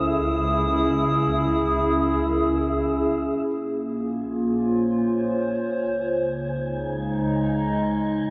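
Worn, warbling old tape and a lush hall reverb wrap this spacious, reflective ambient excerpt in 3/4, where an up-front, detuned, nostalgic pad holds slow-attack chords throughout and a barely audible, organ-like drone hums beneath it from 0.9 to 3.5 s. A very quiet, felt-muted upright piano plays soft, intimate arpeggios with audible action noise until 3.5 s, while a dark, woody bowed double bass section sings with vibrato and tube saturation. From 3.5 s, both the bass section and an airy, breathy wind-like noise texture fade in beneath the pad's shifting chords.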